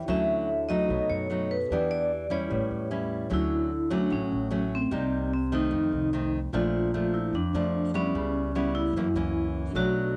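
Romantic and breezy, this bossa nova fragment sets a bright, ringing vibraphone melody, struck with medium hard mallets and carrying a medium motor vibrato, over full-bodied fingerpicked nylon-string guitar that sits up front with audible finger squeak. A woody, thumpy pizzicato upright bass anchors the low end, while a clean tine electric piano heard through built-in speakers adds accompaniment until 3.3 seconds and returns at 9.7 seconds. The home cassette recording carries a moderate studio reverb as the harmony drifts from Dmaj7 through Cm7 and Bbmaj7 toward F#7.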